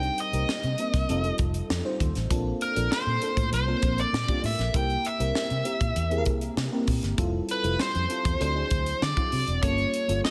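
From the first second, a nasal, overdriven lead guitar with a parked wah carries the melody up front, alongside a lush FM electric piano with a soft pad layer treated with phaser and subtle chorus, a round, foam-muted fingered bass, and a crisp fusion drum kit with a high-tuned snare, tight kick and hi-hat under gated reverb. This polished 1980s jazz-funk pop cut sits at 98 BPM in a straight 4/4 and feels urban and bittersweet, moving through chords from Cm7 and F7 to Bbmaj7, C7, Fmaj7, D7 and Gm7b5. All four parts play throughout the 10.3-second excerpt in a small room with light reverb.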